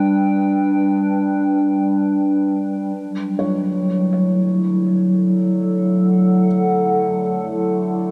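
This ambient excerpt drifts in free time with a warm, serene mood, cut from a longer piece. A warbly, tape-like synth pad sits up front from the start, holding dark, nostalgic sustained chords with slow attacks and long releases, thickened by chorus and its own reverb. The harmony moves from G to F#m7 at 3.0 seconds. A felt-muted upright piano enters at 3.4 seconds with soft, boxy arpeggios around C#5, its action noise audible and its notes trailed by tape echo. An overtone-sweeping drone fades in from 3.8 seconds, low in the background, its nasal, resonant tone shifting as it sustains. The whole recording is bathed in a huge, wet ambient reverb with a 7.7-second decay.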